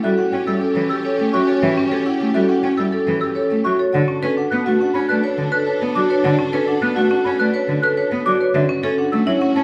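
Urgent yet meditative, this minimalist pattern piece at 104 BPM in 4/4 is cut from a longer work and moves through A7, Bm7 and Dmaj7 over its 9.6 seconds. A ringing, airy vibraphone carries the melody while a percussive, boxy marimba with hard mallets and a hollow silver concert flute spin arpeggios, with a mellow alto flute tracing a second line in the background. A focused, up-front bowed cello supplies accompaniment beneath lush, distant sustained chords from a symphonic violin section, all set back in a large, wet studio reverb.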